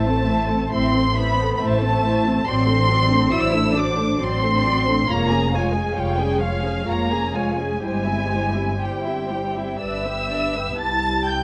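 This classical excerpt is a slow romantic movement for string orchestra in C major, moving at 58-71 BPM in a flexible, rubato 3/4 with a serene, tender mood. A muted chamber violin section carries the melody up front, high in its range, while a second muted violin section sings a lower line beneath it. A muted viola section, placed close, fills in the accompaniment, a more distant muted cello section shares the bass, and a muted double bass section anchors the lowest register from an up-front position. Every section plays con sordino with vibrato, giving the ensemble a dark, veiled colour, and the violins and double basses have a soft attack and a smooth top. The harmony opens on A minor and travels through D7/A, Db/F and C/G to G before settling on C at 10.8 seconds, just after the cellos stop at 10.3 seconds. The recital hall reverb is moderate, and close, detailed microphones capture the bowing clearly.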